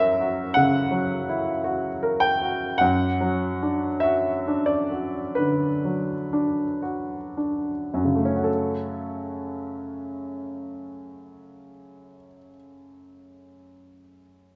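A clear, present grand piano sits up front in this short excerpt from a romantic classical nocturne in F# minor, played with yearning, mournful rubato at a slow 35-56 BPM in 4/4 and tuned to A4 = 439 Hz. Spanning F#2 to G5, the solo piano slows down through the opening 8.5 seconds over harmonies moving from F#7 to Bm/F#, then settles on F#m as a second section begins. A moderate concert hall reverb, with a 1.6-second decay, surrounds the instrument.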